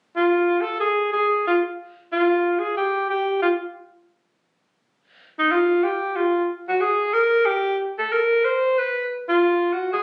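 A bright, vintage-toned alto saxophone enters alone at 0.2 s and carries this relaxed, warm jazz excerpt at a swinging 184 BPM, its vibrato-laced solo sitting up front in a moderate club reverb captured on a phone in the room, with a new section beginning at 4.8 s before the cut at 10.0 s.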